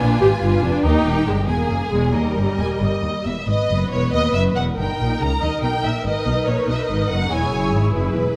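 A distant, expressive first violin section carries the melody of this stormy, dramatic string orchestra passage, its vibrato and portamento sliding between notes before it drops out at 7.7 seconds. The music is a quick classical-period movement in G# minor and 6/8, moving at 94 dotted-quarter beats per minute with a rubato feel, cut from a longer piece. Close behind, a lush second violin line adds body, while the violas supply warm, soft-attacked accompaniment with their own portamento. Beneath them, focused cellos and double basses hold down a deep bass, and every section sings with vibrato. Harmonies shift from a tense Ddim7 through D# and E, then settle onto G#m when a new section begins at 3.5 seconds, all set in a moderate concert hall reverb that gives the ensemble a resonant, rich sheen.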